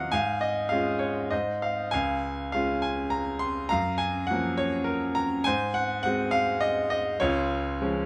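Classical solo piano in Db major, hopeful and warm, moving at 102 BPM in a rubato 3/4 across a brief 8.1-second passage cut from a longer piece: a brilliant, natural-sounding grand piano sits up front in light reverb, spanning Db2 to C6 and tuned to A4 = 437 Hz, as its lyrical line flows through Db/Ab, Ab6, Db, Gbmaj7 and Ab7 before settling back on Db at 7.2 seconds.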